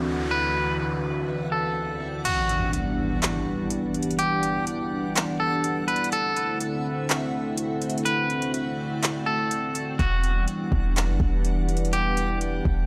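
Atmospheric cloud-rap hip hop in E minor at 124 BPM with a half-time feel, this ethereal, melancholic excerpt opens on a dark, detuned analog pad with chorus and sidechain pumping, a bright, granular reversed texture in the background, a noise sweep with an impact at 2.3 seconds, and a twangy, clean electric guitar melody through tape echo, while an overdriven electronic drum kit of handclaps, metallic hi-hats and crash enters at 2.3 seconds with its soft kick held back until a boomy 808-style bass arrives at 10.0 seconds over chords moving between D9 and Em9.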